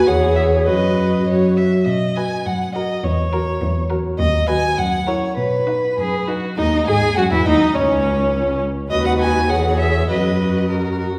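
Cheerful and lively, this quick classical-period string quartet movement, cut from a longer piece, sets a focused, up-front first violin carrying the melody over a smooth, even second violin line, a close viola accompaniment and a rich, vibrato-laden cello bass, all heard from further back in a wet recital hall whose reverb lingers around the players as the opening phrase repeats at 6.6 seconds.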